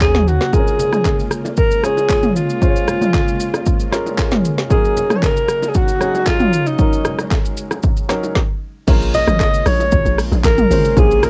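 A dry, cassette-hued home recording carries this deep, soulful amapiano fragment in Bb minor at 115 BPM, where a breathy alto saxophone with light vibrato and tape echo sings the lead up front over a polished concert grand piano and faint, evolving sawtooth violas from a string machine, swirling with ensemble chorus and sidechain pumping. A punchy, layered deep house kit with a woody snare, dark hats, rim clicks, shakers and handclaps drives things alongside very quiet, soft-handed bongos and congas, as the chords move between Ebm7 and Bbm7. At 8.9 seconds the drop arrives with a bouncy, hollow log drum bass, its fast attack decaying mellowly through the final bars.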